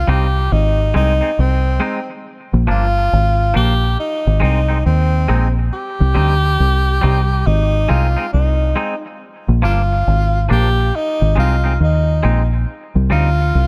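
A dry, close-sounding cut from a longer roots reggae piece, serious and meditative at 69 BPM with a swung feel, where a breathy, whispered tenor saxophone carries the melody up front with vibrato and scooped notes through tape echo, over a deep, round, foam-muted dub bass and a twangy, clean picked electric guitar also touched by tape echo, cycling through Cm, Ab and Bb.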